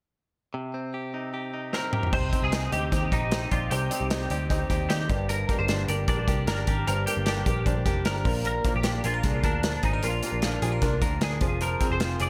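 Bittersweet and wistful, this jangly indie pop excerpt in C minor moves at 152 BPM in a straight 4/4, opening at 0.5 seconds with a twangy, scooped, direct-recorded clean electric guitar playing arpeggios through tape echo, joined at 1.7 seconds by a second bright, compressed clean guitar carrying the melody with ensemble chorus, and a punchy, up-front studio drum kit that enters with a fill. From 2.1 seconds a dark, foam-muted picked electric bass, a woody, slightly detuned upright piano with audible action noise sitting in the background, and a very quiet, shimmering octave-doubled twelve-string acoustic guitar, fingerpicked, fill out the accompaniment. The echo-heavy mix has light reverb and a pumping room sound on the drums, with the harmony moving from Cm through Gm and Bb to Fm.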